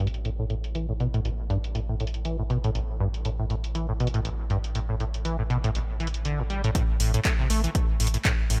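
A squelchy, resonant sawtooth acid bass riff with tube saturation, chorus, dub echo and sidechain pumping opens this playful, raw acid house excerpt at 120 BPM in 4/4 with a 56% swing, over an A5 chord, a deep, round sine sub bass, and handclaps and low-pass-filtered hi-hats from a tape-warm analog drum machine in a small room, before a punchy, up-front electronic kick arrives at the drop at 6.8 seconds, all under a light reverb.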